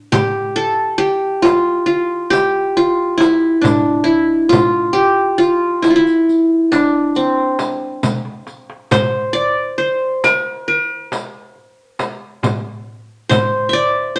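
Set in a straight 10/8 at 136 BPM counted in eighths, this soulful, melancholic Arabic maqam ensemble piece is cut from a longer work and runs about 14 seconds. The acoustic qanun carries the melody between C4 and E5, sitting up front with a bright, plectrum-plucked tone and the edged shimmer of its triple strings. Beneath it, a small acoustic frame drum gives a bright, small-room tone. A crisp metal-shell darbuka, played with soft hands and placed close yet in the background, sits alongside a close, dry riq whose bright jingles sparkle. The percussion breaks into a drum fill from 8.0 to 8.9 seconds before the drums drop out shortly ahead of the qanun's final note at 14.2 seconds. A wet, large studio reverb with a one-second tail gives the ensemble a spacious, resonant setting.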